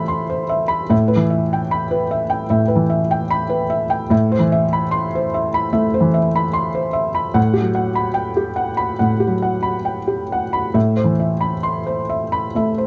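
Closely miked and nearly dry, this intimate recording places a felt-muted upright piano up front, its mellow tone accompanied by the audible noise of the action. A reflective, wistful piece of neoclassical minimalist piano, it unfolds in a loose, rubato 4/4 with unevenly placed beats, the solo piano spanning from its low register up into its upper range. The harmony drifts gently around an A-rooted chord, moving through Em/A and Gmaj7/A before settling back, in this brief passage cut from a longer work.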